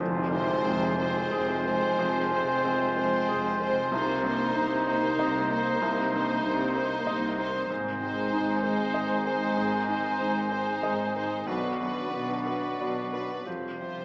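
Cinematic, emotional film score for orchestra in F dorian, moving and sorrowful, flowing in a rubato 3/4 at around 94 BPM with uneven beats, cut from a longer piece. A bright tam-tam strikes in the background with a full-band accent at the opening and sounds until 2.6 s, while a felt-muted upright piano with audible action noise murmurs softly behind everything and a very quiet, ringing concert harp plays arpeggios. From 0.3 s an intense chamber violin section carries the vibrato-rich melody in a narrow high range, supported by a smooth, very quiet second violin line and a lush, soft-attacked viola section in the accompaniment. Airy, hollow flute, a distant, roomy oboe and a clear clarinet play second lines above a tight, mellow French horn section holding sustained chords, while rich cello and double bass sections anchor the low end in the background. The harmony moves from Fm through Cm7 and Ab to Bm before settling on Fsus2 at 13.5 s, all bathed in wet scoring-stage reverb with a small-speaker character.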